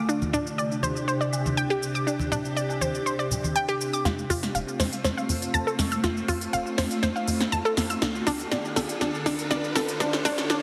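Heavily compressed, radio-style sound in a lush hall reverb frames this uplifting, hopeful progressive house excerpt at 121 BPM in F major, where a bright, evolving wavetable pad with phaser and ensemble chorus holds sustained chords and a round analog pluck with tape echo spins arpeggios, both under filter sweeps through the opening section, as the harmony moves from Csus2 to F and Dm. A punchy big-room dance kit with crisp hats sits up front, joined early on by hard-hand congas and woodblock. A tight, nasal sequencer bass with tube saturation arrives at 4.1 s as a build-up and drum fill begin, and a very quiet riser creeps in from 6.2 s.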